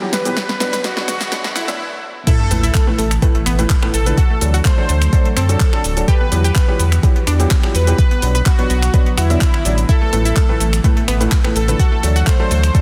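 An overdriven, deep electronic kick drum sits up front from 0.4 seconds in this expansive, bittersweet progressive house excerpt at 126 BPM, where a drum fill, mellow felt-muted upright piano stabs and a smooth supersaw melody ride filter sweeps toward a drop at 2.3 seconds, soon followed by a round, dark analog bass with sidechain pumping. From the start, a punchy-snared deep house kit with handclaps, finger snaps, hi-hat and shaker, bright chorused pluck arpeggios in the background and a very quiet morphing wavetable pad carry on throughout, while a faint riser and sub drop fade after the drop, all over chords moving through Bm, Asus2, D and Emadd9.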